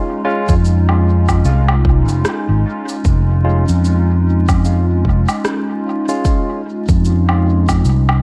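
A warbling, detuned tape-like pad holds a dark, nostalgic Db/F chord with chorus, while a bright, barky tine electric piano throws out clean stabs trailing dub echo, setting a spacious, meditative ambient dub mood at 75 BPM in 4/4 with a 16th-note swing. At 0.5 seconds a punchy, up-front fingered electric bass rumbles low alongside a deep, overdriven electronic kick, and a tape-warm shaker, woodblock and rim click patter through their own dub echo in a large-room sound. Vinyl crackle and light reverb frame this fragment of a longer piece, matching the pad's lo-fi, vintage warmth; the electric piano drops out at 6.6 seconds.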